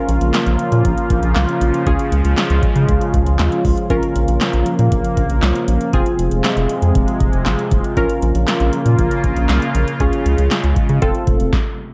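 A straight 4/4 groove at 118 BPM drives this cool, melancholic synth-pop fragment in Bb minor, built on an up-front electro analog drum machine with a deep kick, punchy snare, metallic hi-hats and handclaps, the snare, clap and hats carrying a short room while the whole kit has a tape-warm character and the air of a large space. A rubbery square-wave bass sits equally forward, hollow and bouncy with a resonant filter pluck, moving between F1 and Db3. Above it, a funky polysynth comp of detuned sawtooth tones, ring modulation and wave-folding adds a filter sweep and chorus in the C4 to Bb4 range. A bright, evolving pad of sawtooth layers with a sub octave rises through a slow filter swell, sustaining chords between C3 and F4 with chorus and tremolo. The harmony cycles Bbm, Db, Bbm and Fm before turning to F near the end, and all parts break off into a brief stop around 11.5 seconds, framed by dark production and light reverb.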